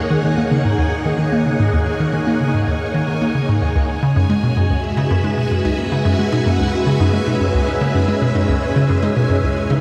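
A lush, vintage string machine opens this short cut of cosmic, mysterious space music, holding sustained chords up front through phaser and ensemble chorus, while a bubbling, resonant filter texture steps randomly high above it. At 0.1 s a hollow, bouncy square-wave pluck enters up front with a mellow, detuned riff colored by chorus, cassette tape and tape echo, joined by very quiet, bright sawtooth arpeggios. The sequencer-driven groove moves at 111 BPM in straight 4/4 from Ebm to Dbmadd9 at 3.8 s, all of it set in a vast cathedral reverb with a 5.7-second tail.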